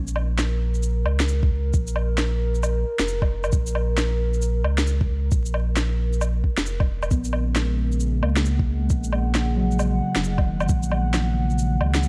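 A swung 4/4 groove at 134 BPM drives this ghostly, nocturnal future garage passage in Bb phrygian, cut from a longer piece. Electronic shaker, woodblock and a woody snare tick along from the start, and a soft, tape-warmed kick sits up front from 1.4 s to 10.8 s, the drums carrying a small-room, re-recorded character. Beneath them a deep, round sine sub bass holds the low end and pumps with the sidechain. A warbling, detuned pad of sawtooth and triangle tones sustains mellow, nostalgic chords over Bbm, its slow attack, chorus and built-in reverb giving it a lo-fi, vintage haze. At 7.1 s the harmony moves to Dbsus4 and muted, felt-like synth keys enter with soft, decaying notes, their chorus, tape echo and noise layer adding an intimate, dark glow. The whole production is lightly reverberant and dusky, with vinyl crackle running throughout.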